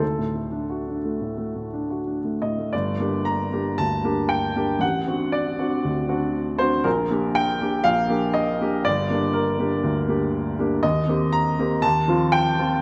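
Warm and passionate, this short excerpt of a romantic character piece for solo piano unfolds in G minor with a free, rubato pulse moving between 86 and 124 BPM in 4/4. The baby grand sits up front with an open tone and long sustain, ranging from G1 to Bb5 across its 12.8 seconds, set in a moderate concert hall reverb. A brief opening on D gives way at 2.7 seconds to a new section that moves through Gm, D7/A, Gm/Bb and back to Gm before reaching Cm7/Eb and F7/Eb near the close.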